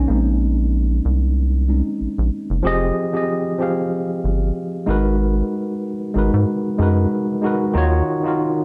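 A dark, moderately reverberant mix carries this sultry, late-night neo-soul R&B excerpt at 94 BPM with a lightly swung 16th feel: a worn, slightly out-of-tune tine electric piano, lightly overdriven and up front, comps through Bbm11, Fm9, Abm9 and Ebm9, while a rubbery, hollow, nasal square-wave bass with a bouncy filter pluck holds the low end until it drops out at 8.0 s.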